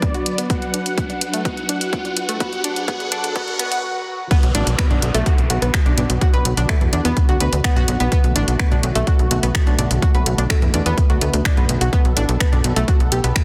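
Dense, heavily limited and lightly washed in digital ambience, this hypnotic, melancholic melodic techno excerpt opens on a build-up where a fat, dark analog lead with chorus and dub echo and a smooth supersaw second line ride filter sweeps over a detuned background pad, a round, bright analog pluck arpeggio, an overdriven punchy kick, a house kit of finger snaps, hi-hat and toms playing a fill, and a background riser and downlifter, then after a brief break the drop lands at 4.3 seconds with a tight, driving sequencer bass pumping under the pad and pluck while a barely audible, evolving analog drone enters at 6.9 seconds.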